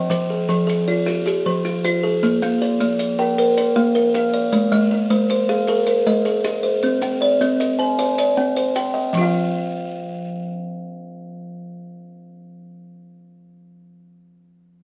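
Two kalimbas open together in a rippling southern African mbira-style interlocking cycle in 12/8, one woody and buzzing on a solid board with a ringing, mid-forward tone, the other bright, short and hollow-boxed, both up front as their thumbnail-plucked arpeggios move through a chord cycle that shifts to a suspended harmony at 9.1 seconds, while grainy, mellow maracas sit close and dry from 0.1 to 9.3 seconds, the band heard live together in a large studio with moderate reverb in this warm excerpt.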